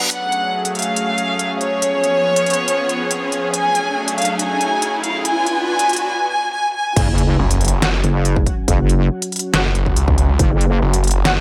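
A lightly reverberant digital sound frames this heavy, menacing wobble dubstep excerpt in a half-time feel. It opens on a bowed chamber violin section carrying an expressive, vibrato-rich melody with a smooth top and dub echo, over a lush, detuned supersaw pad that pumps under sidechain and sits behind a low-pass filter. A layered dubstep kit with a deep snare and crisp, filtered hats joins almost at once, while a reverse cymbal, riser and sub drop build tension in the background. The violins fall away at 6.9 seconds, and at 7.0 seconds the drop hits with a punchy, tape-warm electronic kick and a saturated, square-wave wobble bass thickened with chorus and overdrive. A snarling, growling sawtooth bass with a resonant moving notch and heavy distortion piles on moments later. From 7.8 seconds a clear brass ensemble adds soft, classical-style stabs with light vibrato and dub echo in the background.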